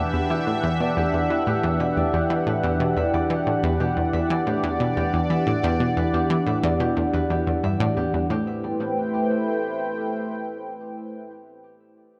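A straight 4/4 pulse at 90 BPM carries this mysterious, expansive ambient fragment in A dorian: a round, sawtooth analog pluck riff with chorus and tape echo sits low and up front beneath an evolving, detuned sweeping resonant pad whose sustained chords gain a sub-octave glow and chorus, while a ringing, fingerpicked concert harp drifts in the background through tape echo in arpeggios, the mix set in a long plate reverb as Em7 gives way to Am7 at 8.3 s and the pluck stops at 8.6 s.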